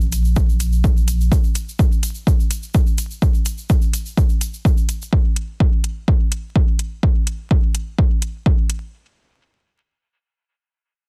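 Dub techno at 126 BPM in a straight 4/4, hypnotic and cavernous, cut from a longer piece. A deep, round sine sub bass with tube saturation, sidechain pumping and a filter sweep sits up front only until 1.3 seconds, while a grainy, bright egg shaker runs to 5.1 seconds and a punchy analog kick drum, entering at 0.4 seconds, drives alongside layered, metallic, overdriven hi-hats. The sound is dry and dense, with a heavily limited modern master and a coat of vinyl crackle.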